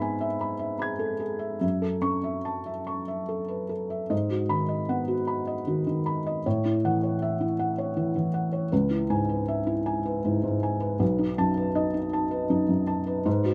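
Wistful and reflective, this short neoclassical minimalist piano piece is cut from a longer work and moves at roughly 71-80 BPM in a gently rubato 3/4. A felt-muted upright piano plays solo throughout the 13.5 seconds, its thick felt giving a soft, dark, intimate tone that sits up front. The music rests in F# dorian, opening on E/G# and F#m7 before a second section begins at 4.1 seconds and drifts through G#m7, F#m7/A and C#m7 to settle on B7. The piano spans from B1 up to G#6, letting mellow low notes and high tones share the same hushed space. The dry outdoor recording carries little reverb, keeping the sound close and unadorned.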